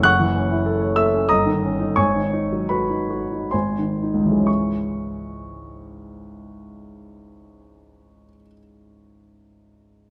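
A warm, up-front grand piano carries this brooding, stormy romantic character piece in C# minor, a short excerpt in 3/4 with a rubato feel between 59 and 100 BPM, slowing down over the first 4.5 seconds as the harmony moves from F#m7 through D#7/G and G#7sus4 to G#7 before settling on C#m, all captured with close, detailed microphones and light reverb.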